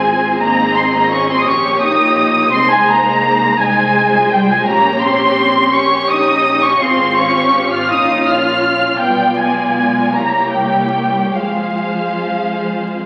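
A slow, melancholic string orchestra movement in F minor and 6/8, around 49-57 BPM with rubato, opens with every section playing at once: an up-front violin melody with soft attack, vibrato and a warm, lush tone rides over a focused second violin line, expressive close violas, rich cellos and a bowed double bass section. The yearning harmony passes from Ab through diminished chords and a C7b9 before settling on Fm at 11.3 s. A wet scoring-stage reverb and the vinyl crackle of a very old 78 rpm record give this cut from a longer piece an aged sound.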